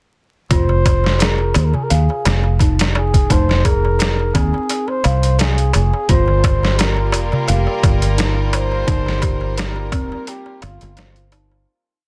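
A dense, heavily limited master with vinyl crackle and little reverb frames this dark, brooding trip hop piece in F minor, moving at 86 BPM in 4/4 with a slight sixteenth-note swing. From 0.5 seconds a gritty, pitched-down sampler drum kit with a thumpy kick and medium-tuned snare plays a looped, edited breakbeat up front, joined by a punchy, foam-muted fingered electric bass carrying a dub-style line and a crisp, close metal-shell darbuka sounding its dum and tek strokes. Over this, a veiled trumpet with a bucket mute states a hook-based motif with light vibrato, colored by 12-bit sampler grit and tape echo, while a slightly out-of-tune, bell-like worn celesta repeats a 16-step arpeggio sequence through its own tape echo. At 6.1 seconds the harmony shifts from Fm to F9sus4 as a distant, reedy violin section enters with sustained bowed chords in a gut-string, period style. The groove runs throughout, with a fade-out beginning at 7.9 seconds and closing the piece at 11.7 seconds.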